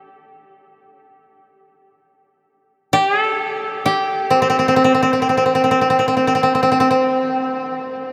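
A solo koto, plucked with fingerpicks and sitting woody and up front between C4 and A4, carries this still, austere fragment of traditional Japanese chamber music for 8.1 seconds in a vast, echoing space whose huge ambient reverb lingers for 8.6 seconds.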